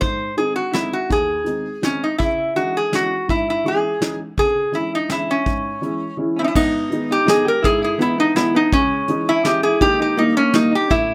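A whirling, nostalgic musette waltz in 3/4 at 165 BPM, moving from C# harmonic minor into G# harmonic minor at 6.6 s. An up-front, bright, nasal acoustic resonator slide guitar, played with fingerpicks, carries the melody over a woody, slightly detuned, boxy upright piano and a soft, airy brush kit with a medium-tuned snare and punchy kick. At 6.4 s a clean, picked hollow-body electric jazz guitar adds a second line, and a moderate small room reverb gives the short fragment its space.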